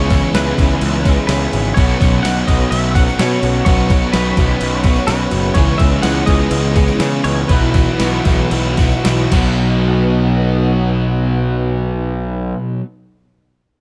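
A dreamy, hazy stretch of shoegaze-tinged dream-pop rock opens at once with a growly fuzz bass and a thumpy, sampler-style 8-bit drum machine up front, a twangy clean guitar riff, background layers of crunchy overdriven and double-tracked distorted guitars, a shimmering twelve-string acoustic picking very quiet arpeggios, a faint, warbling organ-string pad holding sustained chords, a compressed clean guitar melody with chorus and slapback echo until 9.0 seconds, and a jingly tambourine, set in a dark, dry production that slows from 5.6 seconds before the drums stop near 9.5 seconds.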